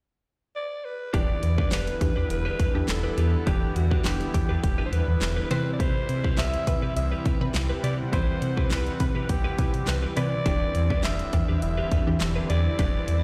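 A breathy, raspy alto saxophone carries the melody alone with a dub echo from 0.6 s, then at 1.1 s this confident, bittersweet dance-pop cut in E minor at 103 BPM fills out with a punchy, up-front electronic pop drum kit of handclaps, hi-hat, kick and fat snare, a deep sine sub bass with octave, a lush detuned unison pluck in the background, and airy soft supersaw chords, those three pumping under sidechain, plus a clean direct-recorded electric guitar riff with analog chorus, over Em7, Cmaj7 and back to Em7, heard dry through a big sound system in a bare stone room.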